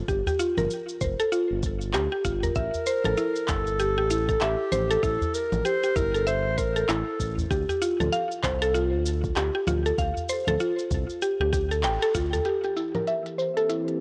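A woody, round mallet-like synth pluck anchors this organic downtempo excerpt, its FM arpeggios sitting up front with chorus and analog delay in a hypnotic, swung 4/4 groove. Beneath it, a smooth, mellow synth bass blends sawtooth and triangle tones, while a soft electronic kick, a small, close and dry udu, and an electronic kit of congas, handclaps, shaker and crisp hats keep a gentle pulse. The kick and the kit are re-recorded in a small room, and the kit is also low-pass filtered. A solo clarinet with a warm, classical-style tone enters at 2.6 seconds and carries the melody until 7.4 seconds, touched with its own analog delay. After a short accent from the band, the pluck gets a filter sweep, and a warbling, nostalgic, detuned pad with chorus, phaser, built-in reverb and sidechain pumping appears at 13.2 seconds over a C7 chord. The whole piece has a dry, gritty hardware sound with light reverb, and it is cut from a longer track.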